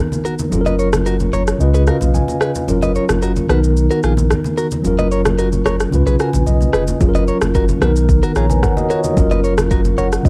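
A mellow tine electric piano with cassette-tape coloring opens this joyful, sunny afrobeats excerpt at 111 BPM in F# major, joined by a very quiet electronic impact at 0.2 seconds, an up-front produced drum kit of deep kick, rim click and shaker, background congas with a thin, saturated skin, a bright, scooped clean guitar riff fed through analog delay, and a round sine sub bass from 0.5 seconds, all over major-seventh and dominant chords, with short electric piano fills in a dry home cassette recording.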